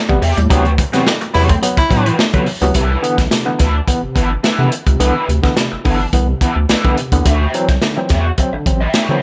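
Hypnotic and sly, this funk excerpt at 107 BPM in 4/4 sets gritty, up-front breakbeat drums with a tight kick and a deep, round analog bass under barky electric piano stabs pulsing with fast tremolo, a raw garage guitar through wah and overdrive, and a twangy, slightly broken-up guitar riff that sits in the background until 2.7 seconds, while a mellow baritone saxophone adds a brief vibrato line from 1.3 to 2.1 seconds, all moving from Am7 and D13 into Cmaj9 and D9 in light reverb.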